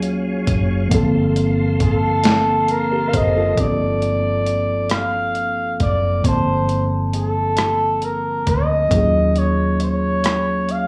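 A punchy flugelhorn carries the melody from 1.8 seconds, its scooped notes sitting up front yet sounding distant and roomy, touched with plate reverb and slapback echo. This is a sultry, late-night slow R&B groove in G minor, moving at 45 BPM in a straight 6/8 feel. Beneath it, a mellow tine electric piano plays clean accompaniment through its built-in speakers, sharing the horn's plate reverb and slapback echo. A dusty, sampler-style drum kit adds gritty, overdriven hi-hat, rim click, a medium-tuned snare and a thumpy kick, while a dark, round, foam-muted fingered electric bass holds the low end. A full tonewheel organ, lightly overdriven with chorus vibrato, key click and a slow rotary speaker, sustains chords only until 3.6 seconds, as the harmony shifts from Ebm11 to a long stretch of Gm11 before returning to Ebm11 at 8.9 seconds. Heard as a live gig through a club PA with small-room ambience, this warm excerpt is cut from a longer piece.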